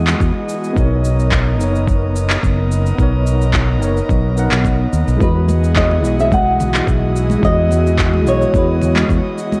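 Sunset chillout in E lydian at 108 BPM with a light 16th-note swing, this blissful, relaxed excerpt cut from a longer piece drifts over Emaj9 and Bmaj9 chords as a worn, slightly out-of-tune tine electric piano with overdrive, delay and shimmer reverb plays beside an airy, breathy pad with chorus, while an up-front fingered electric bass, a gritty, thumpy overdriven kick and layered, overdriven electronic handclaps and shaker hold the groove. At 5.2 s a thumb-plucked flamenco guitar takes the melody through tape echo and shimmer reverb, and very quiet, close, dry congas join at 5.5 s. The whole recording sits in a moderate recital-hall reverb with the warbling pitch drift of old cassette tape.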